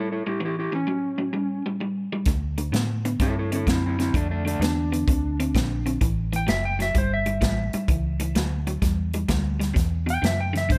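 Heard in a small room, this gritty, laid-back electric blues shuffle excerpt swings along in 4/4, moving through seventh-chord changes before landing on a bare power chord near its close. A dark, fingered slide guitar carries the melody up front, while a picked, compressed electric guitar through a small old amp plays a warm, slightly broken-up riff beneath it. At 2.3 seconds a vintage foam-muted fingered bass with a round, punchy tone enters alongside a natural country drum kit with a medium-tuned snare and punchy kick on hi-hat.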